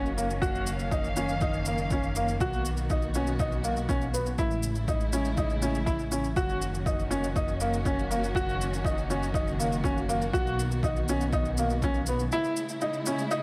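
Piano and strings electronica at 121 BPM in F# major, this short excerpt from a longer piece feels luminous and hopeful, moving through F#6, Bmaj7 and Amaj7 chords. A clear upright piano sits up front with a woody, slightly worn and detuned tone, playing a riff through a digital delay. Behind it, a dark symphonic string section holds lush, bowed chords with expressive vibrato and a smooth top. A deep, rumbling detuned saw bass adds a saturated, beating low end with sidechain pumping, dropping out at 12.3 seconds. An electronic kick drum, punchy and overdriven, plays from 0.4 to 11.9 seconds alongside a layered, overdriven shaker, both placed in studio reverb, while light reverb gives the whole mix a gentle sense of space.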